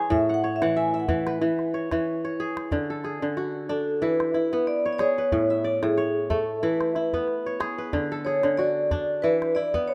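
Joyful and warm, this West African traditional piece moves at 92 BPM in 4/4 with a light 16th-note swing in D lydian, cycling through A, E and D chords. A metallic vibraphone struck with medium hard mallets carries the melody with a medium motor vibrato and slapback echo, taking a solo in the opening 2.7 seconds. Beside it, a bright, crisp, fingerpicked kora rings out up front with arpeggios, while a small, close calabash keeps time, all in a light studio reverb with a rough home-demo feel.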